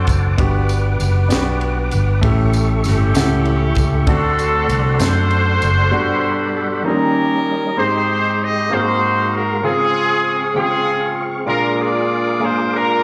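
A smooth-topped horn section carries the melody up front in this hopeful, uplifting slow gospel piece, moving in a straight 6/8 at 65 BPM with a slapback echo on its lines. Beneath it, a concert grand piano with a deep bass end shares the same slapback echo as it fills out the accompaniment, while a clean tonewheel organ holds sustained chords through a slow rotary speaker and chorus vibrato. A round, amped fingered electric bass sits up front alongside a crisp fusion drum kit with a punchy kick, high-tuned snare and dark ride cymbal, and a jingly, close tambourine adds sparkle. The rhythm section and tambourine drop out just before 6 seconds, leaving horns, piano and organ to carry on as the key lifts from G major to Ab major at 7.8 seconds, with rich seventh and thirteenth chords coloring the harmony. Heard as a live club gig through the venue's PA, the sound carries a light reverb and small-room ambience, and this short excerpt is cut from a longer performance.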